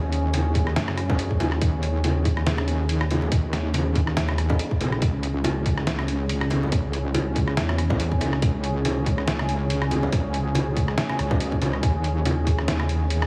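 Deep dubstep excerpt at 141 BPM in a heavy, meditative half-time swing, where an up-front, saturated sawtooth wobble bass and a mellow, detuned dark analog pad with chorus hold D#m and C#5 chords, a gritty, pitched-down trip hop sampler-style kit with hi-hat, rim click and snare joins at 0.1 seconds, followed by distant, ringing congas soaked in dub echo from 0.3 seconds and a tight, layered electronic kick from 0.6 seconds, all pressed into a heavily compressed radio sound with light digital ambience.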